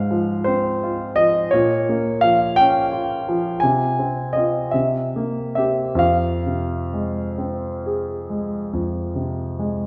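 A slow, rubato pulse in 12/8 drifts between 43 and 59 BPM on the dotted quarter, giving this romantic classical nocturne a freely breathing, unhurried feel. A single concert grand piano carries the whole piece alone, its dark, mellow tone set up front and anchored by a deep bass, ranging from F2 up to Ab5. Cast in F minor and tuned slightly low to A4 = 436 Hz, the harmony moves from Fm/Ab through Gm7b5/Bb and Fm/C to a C7 before settling on Fm at 6.0 seconds. The mood is melancholic and yearning throughout this brief passage. A wet concert hall reverb with a 1.7-second decay surrounds the instrument, lending the notes a lingering, spacious trail. This roughly ten-second passage is cut from a longer piece.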